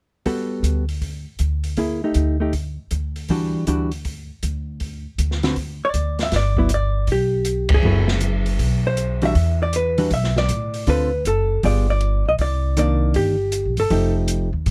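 Swinging and relaxed, this small-group jazz excerpt moves at 158 BPM in 4/4 with swung eighth notes, centred on G major and cut from a longer piece. A fingered hollow-body electric guitar opens at 0.3 seconds, comping through rich chords such as Gmaj9 and Em9 in a dark, clean, compressed tone, while an open acoustic drum kit of ride, hi-hat, snare and kick sits behind it with dark cymbals, a medium-tuned snare and a boomy, rolled-off sound suggesting a small room. A woody pizzicato upright bass on steel strings comes in at 0.6 seconds and stands up front in the mix. At 5.8 seconds a vintage hollow-body guitar, picked and similarly dark and compressed, takes the melody in a fairly narrow upper range, shortly before a band accent lands at 7.7 seconds. The harmony turns restless in the second part, sliding through F#m7, E7, G7b9 and Cm9 before closing on F9. Recorded with close, detailed microphones and very little reverb, the sound is intimate and dry.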